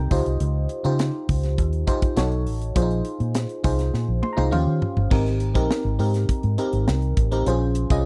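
A glassy FM electric piano opens with a short fill over a dark, foam-muted fingered electric bass, setting up a breezy, upbeat slice of polished 1980s jazz-funk pop in a straight four. The electric piano carries the accompaniment with a bell-like attack and a faint noise layer, its decaying chords shimmering through an analog chorus across lush harmonies such as Dbmaj9#11, Bb9sus4 and Eb13. The bass sits up front, round and punchy in its low register, while a crisp fusion drum kit joins at 0.1 s with bright cymbals, a high-tuned snare, a tight kick, hi-hat, crash and toms. Around 3.9 s the drums and electric piano both play fills that carry the groove into a new section at 5.1 s, where the harmony settles onto Abmaj7 before moving to Bbm7. The sound is dry and close, with the airy, polished drums and the other parts all placed up front in a 1970s-style studio room, and the clip is cut from a longer piece.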